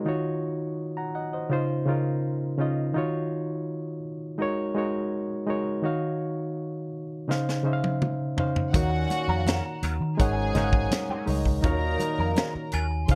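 A reedy, slightly out-of-tune electric piano opens this lush, bittersweet 1970s-style soul excerpt with cinematic Ebm9 and Dbmaj9 chords, a tight funk kit with a high-tuned snare enters on a fill at 7.3 seconds, and at 8.7 seconds a round, foam-muted bass, floating sul tasto strings, distant dark trombone stabs, a clean wah-and-chorus guitar riff and soft-handed congas join, with a sparkling glockenspiel added behind them at 9.5 seconds.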